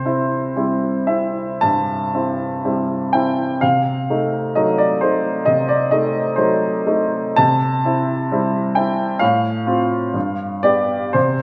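Romantic classical character piece for solo upright piano, passionate and warm in mood, unfolding with a rubato feel over a brief 11.4-second cut from a longer work. The piano sounds clear, woody and slightly detuned, sitting up front with long sustain as it moves from a C chord through a diminished color at 3.6 seconds before returning home and turning toward F and G near the close. A wet recital hall reverb surrounds the instrument, lending the playing a sense of space.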